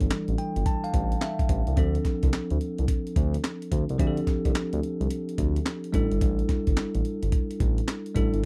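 New jack swing R&B in D minor, this short clip cut from a longer piece struts at 108 BPM with a swung sixteenth-note feel that sounds confident and bouncy. A breakbeat sampler-style drum kit sits up front, its compressed, gritty sound built from a thumpy kick, medium-tuned snare, handclaps and hi-hat. Underneath, a smooth synth bass holds the low end between G1 and D2, its nasal, mellow tone carrying vibrato and a fast attack into sustained notes. A bell-like tine electric piano plays bright, clean accompaniment from E3 to A5, opening with a fill from 0.1 to 1.8 seconds. The harmony moves from A7sus4 to Dm7 at 1.8 seconds and back to A7sus4 at 5.9 seconds, all captured in a dry, close 1970s-style studio sound with little reverb.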